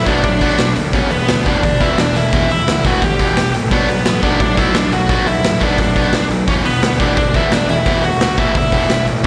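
Raw and urgent, this punk rock excerpt sets a smooth, overdriven lead guitar melody with slapback echo over a bright, picked semi-hollow guitar riff carrying the same echo, a growly fuzz bass in the background, and an up-front, gritty garage drum kit whose punchy kick, medium-tuned snare and hi-hat sit in a pumping stone room, the performance captured as a live gig through the venue's PA with recital hall reverb as the chords move from Bm to Em and back before landing on E5 at 6.5 seconds.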